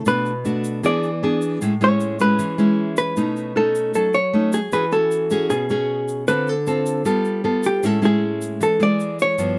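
Bossa nova in a wistful, melancholic mood, this short excerpt runs just under ten seconds in a straight 4/4 feel. A dark, clean hollow-body jazz guitar carries the melody up front, fingered and compressed in a compact upper-middle range. Beneath it, a classical nylon-string guitar fingerpicks the accompaniment across a broad span from low bass notes upward, its fresh strings giving a full-bodied tone with audible finger squeak. A grainy, bright egg shaker sits close and dry at a much lower level, entering at 0.1 seconds. The harmony moves through lush extended chords such as Bm7, E7, Amaj7, B9 and G9, settling back on Amaj7 at 7.8 seconds. Close, detailed miking with little reverb keeps the sound intimate and present.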